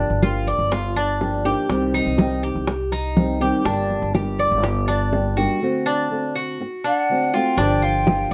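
A metallic, double-strung Cuban tres picks up-front arpeggios over a dark, thumb-plucked nylon-string guitar and a woody, thumpy upright bass in this nostalgic Cuban son and guajira excerpt, with soft-handed congas and round, low-tuned bongos sitting in the background, grainy maracas close by, and a breathy, hollow jazz flute drifting in from a distance at 6.9 s, all set in a light reverb.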